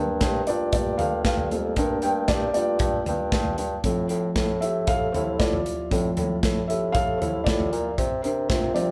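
Uplifting and warm, this short cut from a piano-driven pop piece features a soft, thick-felt upright piano with audible action noise, a distant, mellow bassoon with light vibrato carrying the bass line in classical style, and a polished, up-front acoustic drum kit entering at 0.2 seconds with a punchy kick and a medium-tuned snare alongside hi-hat and toms, the band captured live together in one room with a large studio reverb over chords moving from Gmadd9 to F/A and Csus4.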